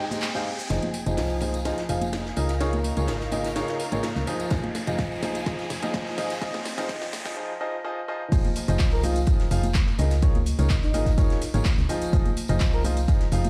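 A clear, woody upright piano riff leads this bittersweet, soulful piano house excerpt, pumping with sidechain and shaped by a low-pass filter sweep and delay, while dark, lush symphonic strings and a background riser carry the opening build-up. A layered house kit of cracking snare, metallic hats, crash, cabasa and handclaps comes in at 0.1 seconds alongside soft-handed congas and tambourine. A round, digital FM bass and a very quiet, airy acoustic kit with bright cymbals enter at 0.7 seconds, and a punchy, tape-warm electronic kick joins at 4.5 seconds. Shortly after the drop at 8.3 seconds, a breathy, flute-like synth lead with chorus and delay enters at 8.9 seconds and floats in the background, and the mix sits in a light stone-room reverb.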